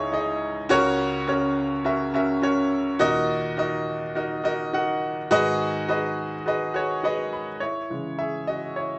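Driving yet bittersweet, this short pop excerpt, cut from a longer piece, centers on a lone grand piano heard clear and intimate, set present and up front in the mix. The straight 4/4 feel carries a steady forward push as the harmony moves through C#madd9, F#/C#, D#m and G#m7, ranging from a deep C#2 up to B5. Close listening reveals audible action noise from the instrument, lending the performance a tactile closeness. A piano fill arrives at 6.7 seconds, leading into a solo passage from 7.6 seconds that settles onto C#m. The sound sits in a moderately reverberant large studio, captured as a live room performance with a rounded top end that keeps the brightness gentle.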